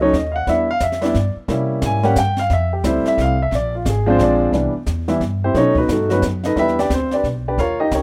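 Swung eighths in a lilting 3/4 carry this relaxed, sophisticated jazz piano trio fragment, cut from a longer piece, with the upright bass and grand piano starting together and the brushed kit joining at 0.1 seconds. The warm, up-front piano takes the solo across both passes of the same section over changes such as Em7, C7b9, Fmaj9 and Bb9, while the woody pizzicato bass anchors the low end beneath it. Softer in the mix, the drums pair a high-tuned snare and hi-hat with a boomy kick, all heard through small room ambience in a rough home demo sound.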